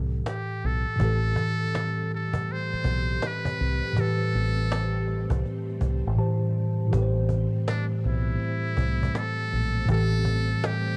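A worn, slightly out-of-tune tine electric piano sits up front with cassette-tape character in this melancholic, reflective lo-fi hip hop piece, swung on the sixteenths, with a deep, round, foam-muted fingered electric bass underneath. A buzzy, thin trumpet with a metal mute carries the solo melody in jazz style with light vibrato, while a woody cajon played with soft hands adds faint snares and 12-bit sampler grit, briefly falling silent from 6.2 to 6.9 seconds. Shimmering sawtooth string-machine violins enter at 1.0 seconds, holding soft-attack chords with ensemble chorus in the background of a dry home cassette recording.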